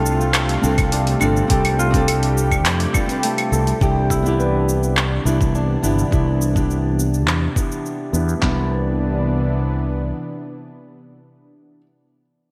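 Sunset chillout in C major at 104 BPM, this short excerpt from a longer piece feels blissful and sunny, drifting from a G9sus4 chord to Cmaj9 at 3.8 seconds. A small, thumb-plucked nylon-string guitar carries the accompaniment with audible finger squeak, softened by a low-pass filter and delay, and it runs through a filter sweep from 3.8 to 8.4 seconds. Beneath it, a lush unison pad holds thick, warbling sawtooth chords with a vintage, detuned chorus shimmer, while a ringing Celtic harp spins arpeggios through its own delay. A growly, up-front fretless electric bass anchors the low end. Two overdriven drum kits share the groove: an electronic deep house kit of claves, handclaps, hi-hat and shaker, and a gritty sampler-style soul kit with a thumpy kick and medium-tuned snare whose kick drops out briefly before the chord change. The whole mix sits in a moderate plate reverb with a bright 1980s-style digital sheen, and the drums add studio and gated reverb on top.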